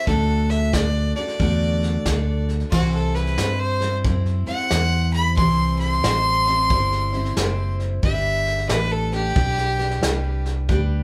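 A clear, earthy fiddle sits up front in this short cut from a longer honky-tonk and classic country piece. Its bowed line carries light vibrato and moves into a solo at 2.7 seconds. Beneath it, a bright, full-bodied dreadnought acoustic guitar is picked as accompaniment, with finger squeak audible. A dark, round fingered electric bass holds the low end, amped and also placed forward in the mix, while a soft brush drum kit with a medium-tuned snare, punchy kick, hi-hat and crash cymbal keeps a swung 4/4 feel that sounds natural in the studio room. The band plays live together in a moderate ambience with a faint mains hum, the chords moving from D to C and then to G at 8.0 seconds, in a heartfelt, nostalgic mood.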